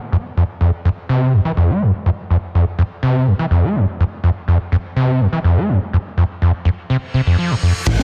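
This breakbeat cut opens with a funky, gritty feel, carried for most of its length by a screaming acid riff alone from 0.1 seconds. That line sits up front, squelchy and aggressive, its resonant sawtooth tone shaped by a filter sweep, with a fast attack, decaying notes, and distortion and chorus. Near the end, an electronic reverse cymbal enters at 7.0 seconds beneath the riff. At 7.9 seconds, the crunchy breakbeat kit and a dark detuned saw bass arrive together just before the cut. The kit is punchy, saturated and up front, with a high-tuned snare, dark cymbals and a rolled-off top. The bass is deep and rumbling, its detuned layers beating with a mellow, sustained body, all set in a light small-room reverb.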